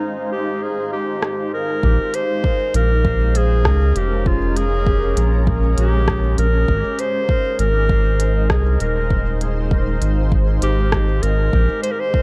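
A clear, classical-style clarinet carries the melody up front, its solo line trailing dub echo over a blurred, evolving granular pad with built-in reverb in this hazy, deep excerpt of ambient dub at 99 BPM in Bb dorian, tuned to A4 = 437 Hz. Smooth electronic hi-hats and rim clicks with dub echo enter at 1.2 seconds, and at 1.8 seconds a tape-warm deep kick joins alongside a round, dark, wave-folded analog bass with tube saturation. The chords move between Ab6 and Bbm7 over a swung 16th-note feel, all set in an echo-heavy digital ambience.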